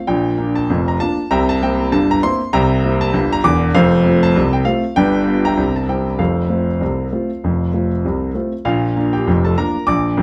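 A solo grand piano opens this lively, jaunty ragtime cut from a longer piece, moving at 98 BPM in 2/4 with a swung sixteenth-note feel in F major across a range from E1 to D6. Its polished, intimate tone carries audible action noise, set in a small, reverberant room and heard from further back. The harmony runs from Bb through C7, F, G7 and C back to F, then a new passage begins on Bb at 8.7 seconds before the recording cuts off at 10.2 seconds.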